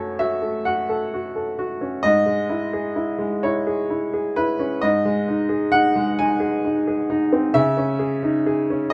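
Neoclassical minimalist piano, this brief passage cut from a longer piece is intimate and wistful, moving slowly in 6/8 with a rubato feel. A solo upright piano carries the whole 8.9 seconds, its tone clear, woody and vintage, sitting up front with a smooth edge. The tuning sits slightly below standard pitch, at A4 = 436 Hz, lending a faintly aged color. The harmony drifts from F#m through E6/G# and G#5 before settling on C#madd9 at 7.5 seconds. Light reverb gives the piano a small, close sense of space.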